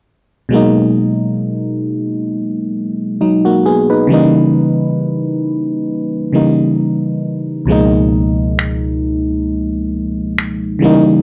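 A glassy FM electric piano enters at 0.5 s with a bell-like attack and a warbling chorus, moving through G#m9, D#7b9 and C#13 in G# harmonic minor at a slow 67 BPM with lightly swung 16ths. This late-night, moody contemporary R&B fragment adds up-front analog electronic finger snaps from 8.6 to 10.6 s, while the piano continues to 11.2 s. The sound is dry and gritty with light reverb and a cassette-tape character, the vintage keys carrying a noise layer.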